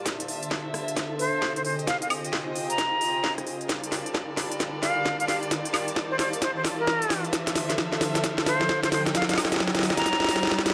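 A moderately reverberant, tape-tinged sound carries this moody, skippy two-step UK garage excerpt at 132 BPM in G minor, where an up-front garage kit of cracking snare, crisp hi-hats, rim clicks and woodblock sits over a very quiet, tight electronic kick, while a lush bowed violin section and a warbling, detuned lo-fi pad pump through sustained Dm9, Fm9 and Gm9 chords, an electronic riser builds alongside a drum fill, and a breathy, bright flute enters at 1.2 seconds with filtered dub echo.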